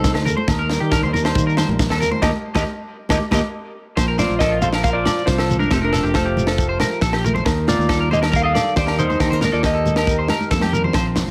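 Warm and carefree, this short highlife guitar band passage moves at 137 BPM in straight 4/4. A dark, clean lead guitar carries the melody up front through spring reverb, while a slightly broken-up, twangy electric guitar plays arpeggios through analog chorus and tape echo, and a fingerpicked flamenco guitar sits in the background. A round, fingered electric bass and a tight funk kit with a high-tuned snare drive the groove alongside grainy shekere, ringing agogo bells and thick-skinned congas in a small room, with a band accent from 2.2 seconds, a move to Bbsus2 at 4.0 seconds and a drum fill at 10.4 seconds.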